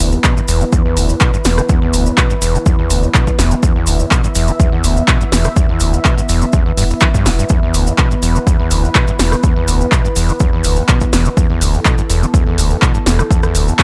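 Gritty and trippy, this acid house excerpt rides a straight pulse, with a squelchy, resonant, distorted acid bass riff carrying filter sweeps and digital delay up front over a round sine sub bass, a moody detuned pad of sustained chords breathing with chorus and sidechain pumping, an overdriven electronic kick entering at 0.2 seconds, a punchy analog drum machine of handclaps, hi-hat, rim click and snare with a short room on the snare, clap and hats, and close, grainy maracas, all set in a digital ambience.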